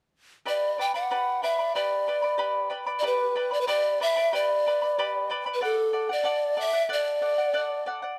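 Close, detailed microphones and a light reverb give this short Andean folk fragment an intimate, polished sound, cut from a longer piece. A breathy, hollow wooden pan flute carries the melody from 0.5 seconds, with a crisp, chiffy attack and vibrato that sit up front in the mix. Beneath it, an acoustic charango supplies fingerpicked accompaniment on shimmering double strings, some doubled at the octave, and rings on briefly after the flute stops at 7.8 seconds. The harmony rests on G before moving to D at 5.6 seconds, over a straight two-beat pulse. The mood is earthy and wistful, with the mellow flute tone giving the brief phrase a reflective, open-air quality.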